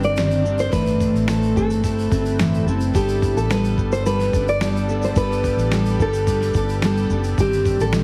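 A fingerpicked nylon-string guitar carries the melody between G4 and D5, its fresh strings giving a deep classical tone with audible finger squeak, set in a plate reverb. This carefree, easy-going acoustic pop excerpt moves at 108 BPM in a straight 4/4 in G major, taken from a longer piece. Underneath, a jumbo steel-string acoustic guitar sits up front with full-bodied picked accompaniment, while a foam-muted fingered electric bass holds a dark, round, amped low end. A grainy, distant tube shaker plays from the very start, and a dusty soul sampler-style drum kit enters at 0.2 seconds with a thumpy kick, fat snare and shaker, gritty and tape-warm as if re-recorded in a small room. In the background, a shimmering ambient pad adds ethereal sustained chords with octave-up shimmer, warbling chorus and a slow attack over a progression that moves from Cmadd9/G through Amadd9/G to Gadd9 at 2.9 seconds. 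The whole mix has light reverb and a heavily compressed, radio-like sound.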